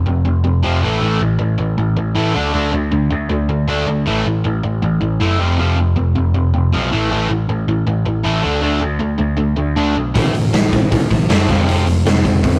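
A straight 4/4 pulse carries this upbeat, rebellious punk rock excerpt, where a crunchy, double-tracked overdriven guitar riff and a growly, punchy picked bass cycle through F5, A5 and D5 power chords from the start, until a gritty garage drum kit with a punchy kick and rolled-off top enters on hi-hat, kick and snare at 10.2 seconds, all captured in a rough rehearsal-room sound with tube saturation and light reverb.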